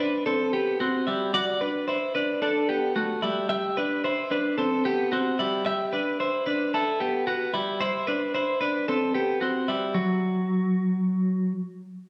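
A clean, twangy twelve-string electric guitar sits up front with a compressed, picked sound, carrying this short indie pop passage on its own at 111 BPM in a straight 4/4. Its youthful, bright mood comes through a chord sequence moving from C to Dadd9, back to C, then Em and C, before the harmony drops away at 10.0 seconds and the guitar stops at 11.5 seconds. A wet recital hall reverb gives the playing the sense of space of a church or concert hall, and the clip is cut from a longer piece.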